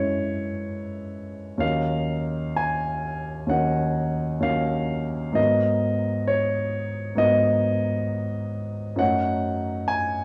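A concert grand piano, up front with a deep bass and a natural tone, carries this nocturnal, mysterious fragment of impressionist classical music alone, moving in a free, rubato 4/4 across its 10.2 seconds. Lush minor-ninth harmonies drift from F#m9 to D#m9 at 1.6 seconds and G#m9 at 5.4 seconds before settling on F#m6, and a wet recital hall reverb lends the cut from a longer piece its shadowy, suspended air.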